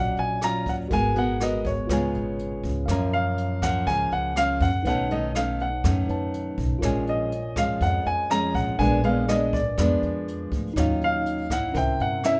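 Lightly reverberant and intimate, this wistful bossa nova excerpt at 122 BPM sets an up-front baby grand piano melody with long sustain over fingerpicked, full-bodied nylon-string guitar with audible finger squeak, a worn, slightly out-of-tune tine electric piano heard through a combo amp, woody pizzicato upright bass, and a small-room brush kit that enters at 0.2 s with rim clicks, hi-hat and a boomy kick, all moving through minor-ninth, minor-seventh, major-seventh and dominant chords from Ebm9 to a closing C7b9.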